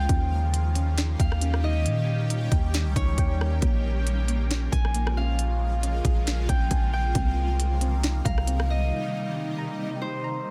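A half-time trap beat at 136 BPM in 4/4 anchors this blissful, floating slice of atmospheric cloud-rap, its electronic kit sitting up front with a hard-clipped kick, sharp snare, crisp hats and a rim click. Underneath, a deep, boomy 808-style bass with a sine core and a noise layer hits with a fast attack and decays mellowly, also placed close to the listener. A shimmering, ethereal pad holds sustained chords through Eb7, Bbm7 and Cm7, its granular texture, octave-up shimmer and bright edge washed in chorus, phaser, its own reverb and a pumping sidechain. A fingerpicked Celtic harp carries the ringing acoustic melody through a digital delay, while a soft, round, dark pluck traces arpeggios in the background with chorus and delay. The drums drop out at 8.7 seconds and the bass at 8.9, leaving harp, pad and pluck to float through a short break in a dry, dense and heavily limited modern mix.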